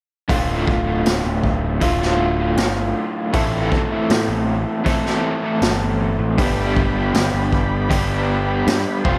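A crunchy, double-tracked overdriven guitar riff opens this short psychedelic rock passage at 0.3 s, soaked in tremolo and dub echo. Alongside it, a growling picked electric bass, bright and overdriven, holds the low end. A raw garage drum kit sits up front with hi-hat, a punchy kick and a medium-tuned snare, its small-room sound gritty, saturated and rolled-off at the top. The mood is mysterious and trippy in a straight 4/4, with the harmony moving from Dm to Am and then to G. At 6.4 s a vintage, buzzy combo organ slips in behind the band with sustained chords, heavily wavering with vibrato. The echo-heavy mix carries light reverb and studio ambience, and the fragment breaks off at 9.2 s as part of a longer piece.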